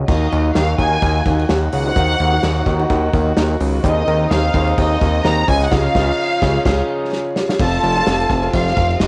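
Dramatic and driving, this excerpt of swung piano-driven pop sets a lush, vibrato-rich violin section up front over a thick, detuned sawtooth analog bass, a deep-toned concert grand in the background with cassette tape coloring, distant mellow brass sustaining chords, and a dark, rolled-off acoustic drum kit played with bundle sticks, all in a small home-recorded booth, with a band accent from 5.7 seconds, a drum fill at 7.1 seconds and a move to F at 7.6 seconds.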